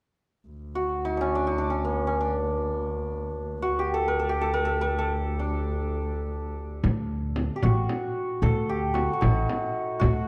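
This is a Persian modal ensemble piece in free time, set in the chahargah mode on D with tuning a shade below standard, and the brief excerpt carries a warm, festive mood. A single bowed double bass, muted and veiled, opens at 0.5 s with a dark drone on a low D, its tone shaded by vibrato and portamento. The santur joins at 0.8 s and carries the melody, its hammered strings bright, shimmering and ringing up front across a range of about an octave. At 6.8 s the drone gives way as a plucked upright bass with a woody, steel-strung sound takes up the bass line up front alongside the santur, and a warm frame drum adds percussion, both continuing to the end. The production is dark overall, set in a moderate recital-hall reverb that lends the ensemble a gentle bloom.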